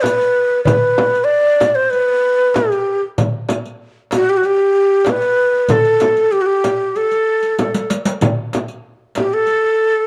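Warm and passionate, this Arabic maqam ensemble piece in G maqam ajam moves at a straight 95 BPM in 4/4, cut from a longer performance. An end-blown, breathy reed-cane ney carries the melody up front, its vibrato and crisp attacks colored by cassette tape, while a small, bright frame drum sits forward, a crisp metal-shell darbuka sits further back, and a riq adds dark jingles. A drum fill arrives at 7.6 seconds, and the whole home cassette recording sits in a small room with a wet spring reverb.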